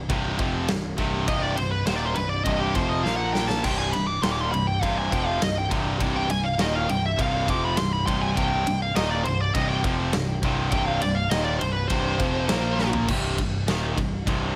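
A straight 4/4 pulse at 102 BPM drives this relentless, dark heavy metal excerpt in C minor, tuned slightly low to A4 = 436 Hz. A big rock drum kit sits up front in a big room, its punchy kick and medium-tuned snare joined by crash, ride and toms, with fills at 3.1 and 12.8 seconds. Beneath it, two high-gain distorted guitars hammer out a picked riff in the background, joined by a very quiet, tight double-tracked guitar, while a growly, direct electric bass anchors the low end. From 1.3 seconds, a bright, high-gain lead guitar solos up front with tape echo over a dark progression that moves mostly between Cm and Bb5. The mix is dry, with little reverb.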